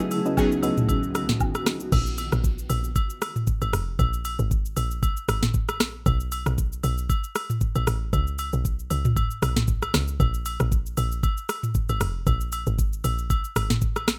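A rough home-demo mix with digital ambience opens this late-night, deep amapiano excerpt at 116 BPM in Bb phrygian: glassy, detuned digital keys with chorus and tremolo and a blurred granular cloud pad with sidechain pumping hold the first 1.9 seconds, a soft, dark pluck with tape echo flickers briefly in the background, close acoustic agogo bells and woodblock click along, and an up-front electronic R&B drum kit with knocking kick, sharp snare and metallic hats runs throughout, joined by a woody, punchy log drum bass that drops in at 1.9 seconds.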